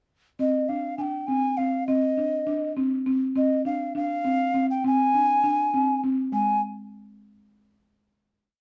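Heard through worn, warbling cassette tape with a warbly pitch drift and a wet studio reverb, this short, complete contemporary instrumental piece moves at 202 BPM in eighths, in a straight 5/8 with a hopeful, shimmering mood. From 0.4 to 6.6 seconds, a buzzing marimba with soft mallets plays a woody, round, dark ostinato of arpeggios over Fm13/C. Beside it, a breathy clay alto ocarina carries a motif-based melody of call phrases with vibrato, a soft attack and an unsteady tone, before a final note rings out from 6.3 seconds.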